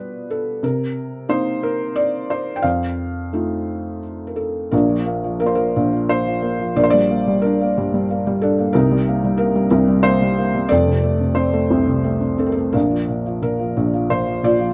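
Close, detailed microphones and light reverb frame this sunny, relaxed fragment of lyrical classical solo piano in Bb major, where a felt-muted upright piano sits up front with a mellow, intimate tone and audible action noise, moving in a rubato 3/4 at around 89 BPM through a brief opening phrase that returns at 4.7 seconds and runs to 14.7 seconds, settling back on Bb.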